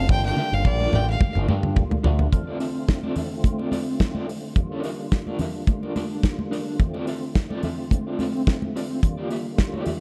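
A straight disco groove drives this sultry cut from a longer piece, with a dry, tight, up-front 70s drum kit opening on a fill under bright, high-tuned congas struck with hard hands. An earthy, boxy bowed fiddle carries the melody until 1.4 seconds, while a picked electric bass, bright through its envelope filter and tube saturation, stands forward until 2.3 seconds. Throughout, a fat, lightly overdriven tonewheel organ with key click, chorus vibrato and slow rotary speaker holds sustained chords beneath a dark, slightly broken-up fingered electric guitar with tremolo, all set in a small room with light reverb and a dark, warm production.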